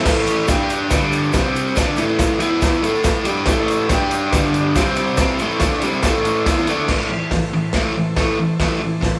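A raw, roomy live-band sound with a large, wet studio reverb opens this menacing garage rock excerpt, driven by a biting, double-tracked overdriven guitar riff soaked in spring reverb and a gritty, boomy drum kit with dark cymbals that sits up front. A grainy egg shaker rattles in the background until 6.8 seconds, while a very quiet, buzzy combo organ with heavy vibrato holds sustained chords from 3.5 seconds. The riff moves through A, G, C and E power chords and A minor, shifting into a new section at 6.9 seconds.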